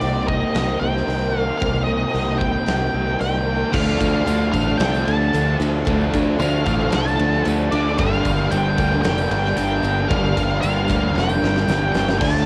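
This melancholic, dreamy piece of shoegaze and dream pop rock in G minor opens at 113 BPM with a dark octave-fuzz lead guitar carrying the melody through distortion and tape echo. Beneath it sit a raw garage guitar riff with overdrive and reverse reverb, a very quiet thick fuzz guitar riff, a growly, up-front fingered bass and a huge arena drum kit with a fat snare and punchy kick, colored by cassette tape, while faint, warbling organ-like string chords and a shimmering, octave-doubled twelve-string acoustic guitar picking arpeggios fill the small home-recorded room. At 3.7 seconds the harmony shifts from Cm7 to Dm7 as a double-tracked crunchy overdriven guitar riff and a jingly tambourine join in the background, and a drum fill arrives at 11.2 seconds in this excerpt from a longer piece.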